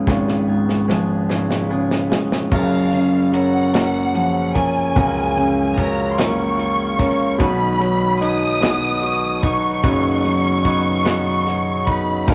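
A swaying six-eight pulse at 49 beats per minute in dotted quarters carries this heartfelt pop ballad in F# major, cut from a longer piece. A concert grand piano with deep bass and long sustain sits up front as the accompaniment, while a clean, picked electric guitar, recorded direct and compressed, spins arpeggios in the background. The drum kit of crash, ride, snare and kick has a dark, smooth sound with a rolled-off top, a medium-tuned snare and a tight kick, and it opens with a fill from 0.1 to 2.5 seconds. At 2.5 seconds, as the harmony moves from C#7 to F#maj7, a symphonic violin section enters up front with a lush, biting, intense second line, bowed with vibrato. The chords shift to B at 7.4 seconds, and a large studio reverb gives the recording a wet finish.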